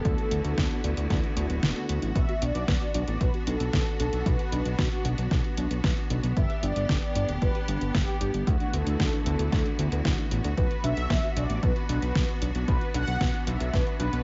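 Italo disco at 114 BPM in B minor, this nostalgic, danceable excerpt sets a mellow, brassy synth melody with chorus and delay over lush, bright bowed strings, a fat, saturated analog bass up front, a punchy electronic kick that drops out from 1.6 to 2.2 seconds, a detuned 8-bit drum machine with a tape-warm snare and hi-hat, brief tine electric piano stabs that stop at 2.1 seconds, and a soft, round pluck arpeggiating in the background from 2.2 seconds, all dry and dusted with vinyl crackle across chords moving through D6, Bm and G.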